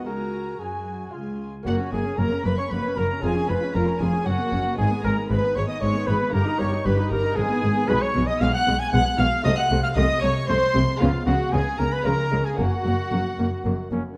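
A mellow solo trumpet with light vibrato carries the melody in this lively, festive excerpt from a baroque-style concerto movement in F# major at 115 BPM in 3/4, alongside a rich, reedy gut-string first violin section, a warm second violin line in the background, nasal dark violas, a delicate fingerpicked double-strung lute, and dark cellos on the bass, joined at 1.7 seconds by a bowed double bass section, all set in a moderate recital-hall reverb with a dark, warm production.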